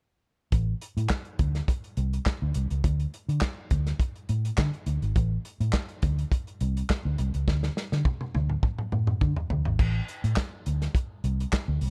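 A round, foam-muted, amped fingered electric bass sits up front in this sultry, danceable disco excerpt in A minor at 104 BPM, alongside a tight acoustic soul drum kit with handclaps, dark cymbals and a pumping room sound that plays a fill from 7.5 seconds before a new section arrives at 9.8 seconds, framed by a dry, warm production.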